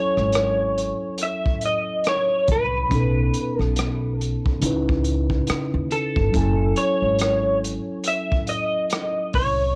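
R&B and neo-soul with an introspective, sultry mood, this short excerpt moves at a slow 70 BPM in F# dorian, with a swung sixteenth-note feel over chords of F#m9, B9 and C#m9. A slightly broken-up, picked electric guitar through a small old amp carries the melody up front with ensemble chorus and cassette tape coloring, while a mellow tine electric piano plays clean, direct accompaniment. Woody pizzicato upright bass and a crunchy, gritty breakbeat kit of tight kick, hi-hat and rim click enter at 0.2 seconds, the drums rolled-off on top and tape-saturated, all in a dry, homespun cassette sound.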